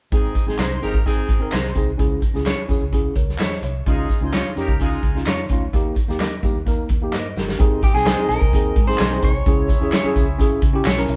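Uptempo 1960s-style soul in Ab major at 128 BPM, this uplifting, joyful cut from a longer piece has a band playing live in one room with light reverb: a natural country drum kit with punchy kick and medium-tuned snare sits up front, a round, foam-muted fingered electric bass gives a dark bottom, and a worn, slightly out-of-tune tine electric piano comps alongside a loose, vintage horn section in octave doubling, with tambourine and handclaps close by. A slightly broken-up electric guitar through a small old amp plays compressed, lo-fi stabs with spring reverb, and after a drum fill at 7.1 seconds a second such guitar carries a picked melody, joined by a mellow glockenspiel with rubber mallets in the background. The chords move from Ab through Dbm, Dbadd9 and Eb, and a tine electric piano fill closes the passage at 10.6 seconds.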